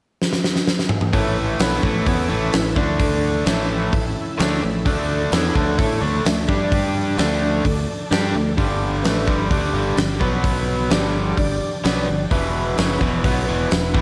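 A straight 4/4 drive at 129 BPM opens with a big rock drum kit fill at 0.2 seconds, its fat snare and tight kick sitting up front, before the full band crashes in at 1.1 seconds on a driving, confident classic rock groove in A mixolydian, moving through A, D5, G5, B5 and E5. A double-tracked, scooped overdriven electric guitar riff leads the charge with slapback echo, while a bright, growly fingered bass punches underneath and a gritty tonewheel organ holds thick sustained chords through a slow rotary speaker, very quiet in the mix. A clear concert grand piano with deep bass and its own slapback echo adds accompaniment in the background, and a lush hall reverb gives this cut from a longer piece a big arena sound.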